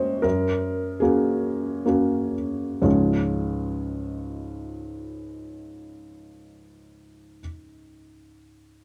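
A felt-muted upright piano plays alone from the first moment, its soft, boxy tone set up close with the mechanical action clearly audible beneath each note. This is a brief, peaceful fragment of neoclassical minimalist piano in Db major, moving in a gently rubato 3/4 at roughly 60 to 82 BPM and tuned to A4 = 444 Hz. The opening phrase rests on a Gb chord and slows down before the harmony settles onto Db at 2.8 seconds, where a second passage begins. The playing spans from Db2 up to Eb5, and the thin felt gives the notes a short sustain that keeps the mood tender and intimate. The sound is dry and close, in the manner of a 1970s studio recording, and the piece is cut from a longer work, ending at 8.8 seconds.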